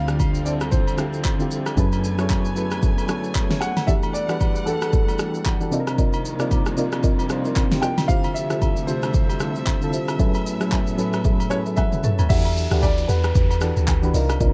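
Deep and hypnotic, this amapiano excerpt at 114 BPM moves through minor eleventh chords as a boxy grand piano melody with tape echo sits over mellow, chorused synth keys that resemble an electric piano, lush bowed strings with sidechain pumping, the up-front deep house drum kit, a punchy fingered electric bass that stops at 3.8 seconds, background agogo bells and woodblock, and a dry, buzzing marimba that enters at 3.9 seconds, until a drum fill leads into a drop at 12.3 seconds where a round, decaying log drum bass and an electronic downlifter arrive in a dark production.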